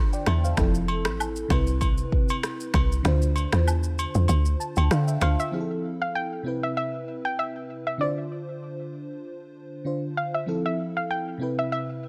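Sunny and breezy, this afrobeats excerpt moves at 97 BPM with a light swing, built on a lush, warbling FM electric piano with a soft pad layer and chorus that carries the Dm7, Fmaj7 and Cmaj7 changes throughout. For the first 5.5 seconds an electronic afro-pop kit with a deep kick, finger snaps, rim click and shaker drives things alongside a woody, punchy log drum bass and close, dry agogo bells and woodblock, with the kick dropping out at 3.1 seconds and the piano adding a fill from 4.3 seconds. At 5.2 seconds a soft, round, dark pluck takes the melody, coloured by chorus and digital delay, over the piano in a dry, up-front mix.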